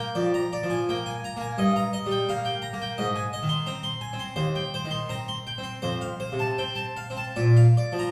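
Radiant and serene, this short passage from a baroque-style suite movement features a solo harpsichord playing in 4/4 with a flexible, rubato feel. The instrument is a Flemish-style harpsichord with two sets of strings, and its plucked tone sounds full and close. It spans a generous range, from deep bass notes up into the bright treble, and is heard throughout the roughly 8.1 seconds of this section. The harmony moves steadily through a chain of chords, starting on Bb7/F, passing through Eb/G, Ab, Cm/Eb and F, and settling on Bb near 7.4 seconds. A stone room's reverb surrounds the playing with a lingering, resonant halo, lending the serene mood a sense of space before the passage breaks off mid-piece.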